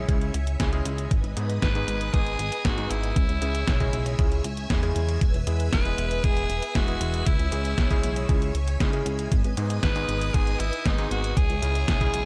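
An excerpt from a longer italo disco piece opens with a raspy alto saxophone carrying the melody over lush string machine chords, a chorused synth bass and stabs from a warm electric grand piano, all moving at 117 BPM in a straight 4/4. The mood is melodramatic and nostalgic, with the harmony circling C# minor, G# minor and E. The saxophone is edgy and forceful, with light vibrato, a gritty 12-bit sampler texture and a digital delay, and it sits present in the mix. The string machine's bright sawtooth ensemble carries a phaser and ensemble chorus, while the glossy, mellow synth bass stays up front with a plucked, fast attack and the electric grand adds a clangy low end with short sustain. From 0.1 seconds, an overdriven, thumpy electronic kick joins a detuned 8-bit drum machine's hi-hat and medium-tuned snare, both sampler-style and re-recorded in a small room, and the whole is set in a digital ambience.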